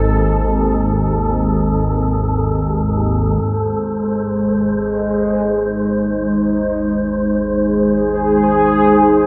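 Drenched in a cavernous cathedral reverb, this excerpt of dark ambient drone drifts in unsettling free time, as a bright, resonant sawtooth pad with chorus and a filter swell sits up front, holding sustained chords that move from Cm/Ab to Ab at 3.4 seconds above a calm, detuned organ-like drone and a faint, breathy, wind-like tuned noise texture.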